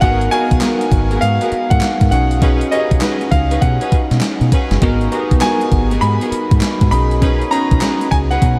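New jack swing R&B with a bouncy, confident swagger, cut from a longer piece, where a brilliant concert grand carries the melody through analog delay over chorused, bell-like tine electric piano chords on G#m9 and B69, lush bowed string stabs sit in the background, a round, foam-muted dub bass anchors the low end, and an up-front, overdriven 80s drum machine with thumpy kick, gated snare, hi-hat and handclaps drives the groove, all bathed in a dreamy, reverb-soaked mix.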